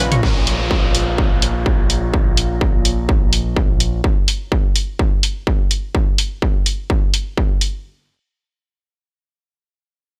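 A straight 4/4 pulse at 126 BPM drives this dark, melancholic melodic techno piece in Bb minor: a distorted, up-front electronic kick and a layered techno kit of hi-hats and toms carry the groove while a gritty sawtooth synth bass, saturated and pumping under sidechain, rides a filter sweep alongside an electronic downlifter until both stop at 4.0 s, and a very quiet, cloudy granular pad drifts above until 2.1 s, set in a bright, dry 1980s-style digital mix.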